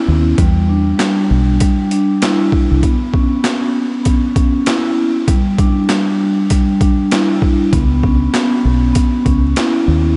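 A mellow, ringing vibraphone struck with soft mallets opens this tough, reflective boom-bap hip-hop excerpt at 98 BPM with a swung 16th-note feel, its slow motor vibrato and cassette-tape colour floating over Em7 and C#m7 chords, joined almost at once by a dark, round, foam-muted fingered electric bass that drops out at 2.8 s and returns at 7.7 s, and at 0.4 s by a gritty, overdriven, pitched-down sampler-style drum kit with a thumpy kick, high-tuned snare, hi-hat and handclaps, the mix set in light reverb and vinyl crackle.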